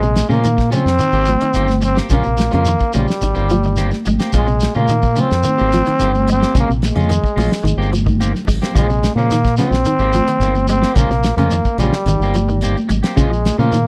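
Driving and defiant, this afrobeat excerpt, cut from a longer piece, rides a straight 4/4 groove that alternates between Bbm7 and Abmaj9 chords throughout. Up front, a raspy, growling trombone carries the melody with vibrato and a gritty, punchy bite. Beneath it, a round, dark fingered electric bass sits prominently, while a clean, bright electric guitar plays picked arpeggios in the background through an ensemble chorus, and a second guitar at the edge of break-up adds slightly broken-up stabs. From 0.2 seconds, a cloth-damped, thuddy drum kit with a fat snare, tight kick, rolled-off top and hi-hat joins the grainy, saturated shekere, alongside distant, high-tuned congas played with soft hands. The drums mark the groove with a fill at 8.1 seconds, and the whole band sounds dry and close, like a 1970s studio recording with little reverb.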